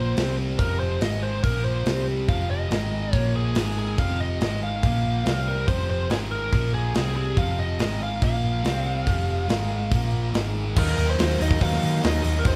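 Hard rock at 142 BPM in F minor, aggressive and driving, with a biting overdriven lead guitar carrying the melody over a crunchy spring-reverbed guitar riff, a bright high-gain guitar, a round, punchy hollow-body bass up front and a gritty, saturated metal drum kit entering at 0.2 s, before a double-tracked crunchy guitar takes over the riff at 10.8 s as the harmony moves to E-flat minor, all in a large live room.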